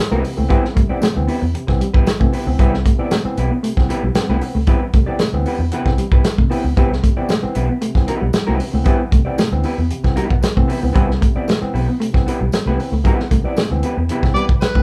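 Funk with a funky, energetic feel, built on a single Cmaj7 chord as a tight, roomy soul drum kit sits up front beside a dark, foam-muted fingered bass, a clean hollow-body jazz guitar accompanies, a mellow fingered electric guitar repeats a riff in the background, a barky, lightly overdriven tine electric piano adds bright stabs, a very quiet, jingly tambourine joins at 1.0 s, and a harmonica with light vibrato and scooped notes slips in at 14.3 s, the whole band heard playing live in one room with light reverb.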